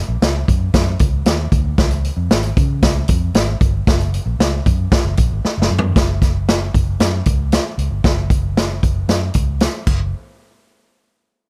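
A natural-sounding acoustic drum kit sits up front in a studio room, its punchy kick, medium-tuned snare, hi-hat, crash cymbal and toms driving this joyful, danceable slice of uptempo 1960s-style soul at 115 BPM in F# major. Beneath it, a vintage fingered electric bass, dark, round and foam-muted through an amp, holds down the low end in a straight 4/4 feel. A drum fill from 5.4 to 6.0 seconds leads into a new section, and the dry mix carries little reverb.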